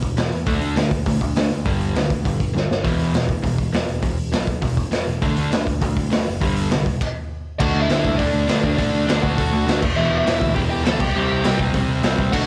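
Aggressive and angry, this punk rock excerpt, cut from a longer piece, charges along at 202 BPM in a straight 4/4, captured as a home cassette recording with little reverb. An up-front, gritty garage drum kit with a punchy kick, dark cymbals and a pumping small-room sound drives a round, overdriven picked bass and two background rhythm guitars, one bright and one sludgy, riffing over D5, G5 and E5, with a drum fill at 2.5 seconds and a stop from 7.0 to 7.6 seconds. At 7.6 seconds a bluesy, distorted lead guitar enters over D, Em and C5.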